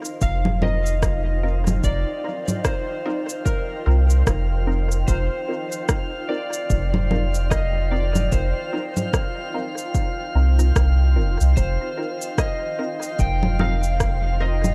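A dark, slightly broken-up electric slide guitar melody with dub echo floats over a cloudy granular pad, a muted, phased chord stab in the background, electronic cabasa, congas and rim click, and a glassy, drifting glass-harmonics texture in this peaceful, hazy ambient dub excerpt at 74 BPM with a swung 4/4 feel, resting on an F7sus4 chord, before a round, up-front sub bass and a deep, tape-warm electronic kick drum enter at 0.2 seconds in a dry sound.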